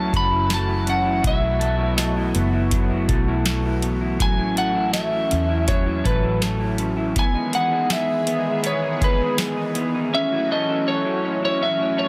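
A compressed, slightly broken-up electric slide guitar, played with fingerpicks and trailed by digital delay, carries the melody up front in this blissful, dreamy dream pop excerpt at 81 BPM in A lydian, moving through F#m7, B7sus4, A6 and Emaj7. Beneath it, a dark, fingered electric guitar at the edge of break-up plays arpeggios with subtle chorus and delay, while a smooth, detuned sawtooth analog pad with slow attack holds sustained chords through chorus. A booming analog drum machine with a deep kick, tonal snare, metallic hats and tambourine drives the groove until 9.9 seconds, and a round, punchy foam-muted fingered bass plays until 7.1 seconds, all set in light digital ambience under a dense, heavily limited modern master.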